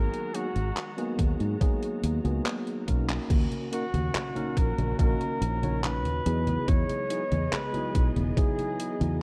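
A detuned 8-bit drum machine with a tape-softened, sampler-style sound plays congas, hi-hat, handclaps and crash cymbal in a straight, unhurried 4/4 at 71 BPM, joined at 1.2 s by a thumpy, up-front electronic kick, with a drum fill from 2.5 s leading into the shift from G#m9 to D#m7 at 3.3 s and later Emaj7. Beneath it, a punchy, foam-muted fingered electric bass sits close and direct, while a clean tine electric piano with subtle chorus comps and a dark, woody symphonic string section, distant and lush with vintage 12-bit sampler grit, holds bowed chords in the background. Over this nostalgic, hazy vaporwave bed, cut from a longer piece and set in light digital reverb, a clear solo flugelhorn sings a pop-style melody with vibrato, scooped notes and tape echo.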